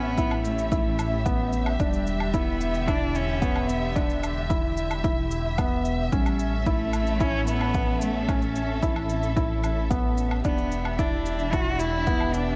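A dark, woody solo cello carries the melody through digital delay in this cinematic, hypnotic piano-and-strings electronica, cut from a longer piece and moving at 111 BPM in E dorian over chords that alternate between A and Em7. Beneath it, a bowed string section with vibrato holds sustained chords under sidechain pumping, a felt-muted upright piano plays a soft, intimate riff with audible action noise and its own delay, and a deep, rumbling detuned saw bass pumps in the low end. A punchy electronic kick enters at 0.2 seconds alongside layered shaker and woodblock, with light reverb and studio ambience around the mix.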